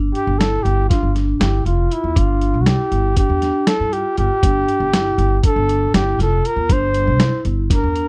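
A dry, close 1970s-style studio sound with small room ambience frames this driving, tense progressive instrumental excerpt in 9/8 at 238 BPM in G dorian, where a dark, breathy trumpet solos up front with scooped notes and a whispered, intimate vibrato over a woody, thumpy pizzicato upright bass, a muffled, pitched-down sampler-style drum kit of kick, snare and hi-hat, and a metallic, ringing vibraphone playing arpeggios with slow motor vibrato over a G7(no3) chord.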